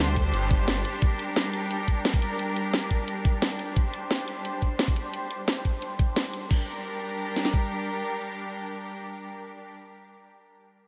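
A dreamy, reverb-soaked mix opens this dark, futuristic slice of technical drum and bass, cut from a longer piece and bathed in a huge ambient tail. A clear, bowed symphonic string section holds sustained chords throughout, its smooth top and light vibrato pumping against the beat while a filter sweep shapes it across the first 6.5 seconds. A swirling, thick, detuned saw bass with a saturated phaser edge sounds only briefly at the start, stopping at 0.8 seconds. From 0.2 seconds, two layered electronic drum kits drive the groove up front, one pairing a knocking kick with a cracking snare and the other adding snare, crash cymbal and hi-hat, both with a touch of small-room ambience. The second kit drops out at 6.6 seconds and the first at 7.6 seconds, leaving the intense strings to carry the closing moments alone.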